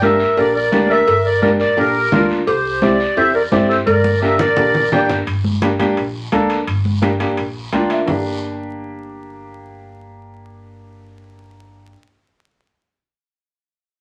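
Wrapped in vinyl crackle and a wet studio ambience, this passionate, fiery cumbia fragment opens with a sweet, reedy accordion melody with light tremolo tuning and a mellow clarinet second line with light vibrato and scooped notes, both dropping out at 5.2 seconds, while a woody, up-front upright piano, a pizzicato upright bass, bright close congas, a raspy distant guiro, and ringing cowbell and timbales, joining at 0.4 seconds in the background, drive on, the percussion stopping at 8.2 seconds after a piano fill from 7.6 seconds and leaving piano and bass to carry the ending.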